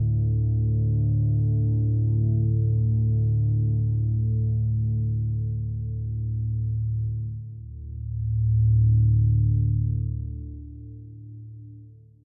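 Bathed in a huge ambient reverb, this ominous, vast ambient fragment in free time features a lone, dark, rumbling drone blending triangle and sawtooth tones, sitting up front with a slow attack, long release and its own built-in reverb as it sustains a D5 chord between D2 and A2 from 0.0 to 11.2 seconds, shifting into a new section at 7.1 seconds before the excerpt is cut.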